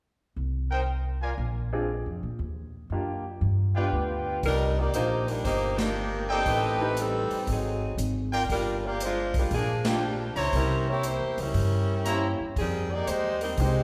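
A woody, thumpy pizzicato upright bass opens this sultry, dramatic big band swing excerpt in C minor at 118 BPM, joined moments later by clear, tightly stabbing trumpets and then a bright upright piano, before a swinging drum kit with dark cymbals and a punchy kick arrives at 4.4 seconds and the warm, vibrato-laden saxophone section takes up the melody, the full band hitting accents at 5.7 and 9.8 seconds in the airy wash of a recital hall.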